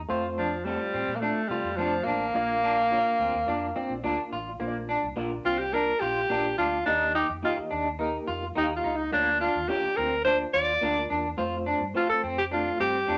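Soul in a joyful, uplifting mood, this excerpt from a longer piece rests on a dark, round, foam-muted fingered electric bass and a reedy, bright electric piano shimmering with fast tremolo. Two slightly broken-up electric guitars through a small old amp add picked parts: a lo-fi riff with tremolo sits in the background, while warm stabs enter up front at 0.7 s. A clear, vintage-toned alto saxophone carries the melody with light vibrato, subtone and scooped notes, then takes a jazz-style solo from 4.6 s, set in a wet studio reverb.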